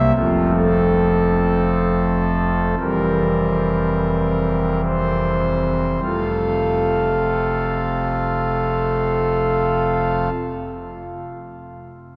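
A serene, majestic classical chorale-style excerpt in F major and 3/4, moving at a stately 49-72 BPM and slowing down over its first 6.0 seconds. A solo pipe organ on foundation stops carries the whole passage up front, its thick, romantic voicing spanning F1 to F5 as the harmony moves from F to C7/F and settles back on F at 6.0 seconds. A cathedral reverb with a 5.3-second decay wraps the sound in a vast, wet space.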